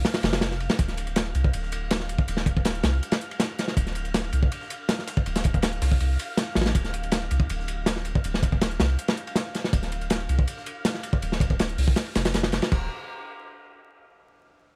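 A crunchy, saturated breakbeat kit with a tight kick, medium-tuned snare and dark, rolled-off cymbals opens this dark, nostalgic drum and bass excerpt at 161 BPM in D minor, sitting over a round, deep dub sub bass holding a single Dm chord. At 0.8 s a pitched-up, compressed sampler-style break of high-tuned snare and filtered hats joins in the background, while an airy, breathy wind-like noise layer with built-in reverb hovers softly behind. The small room ambience and vinyl crackle give the piece a worn, gritty character before the drums drop out around 12.8 s.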